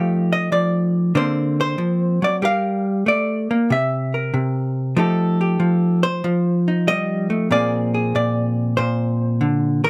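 Solo jazz with a relaxed, swinging feel: a lone hollow-body electric guitar moves through changes in F mixolydian at a medium 95 BPM in 4/4, with a lilting swing on the eighths. The guitar is dark, clean and picked, compressed and placed up front, ranging from Bb2 to F5 across F9, D7alt, Gm7 and C7 before the phrase returns at 5.0 seconds and settles onto Bb9. Close, detailed microphones and a light reverb frame this brief cut from a longer piece.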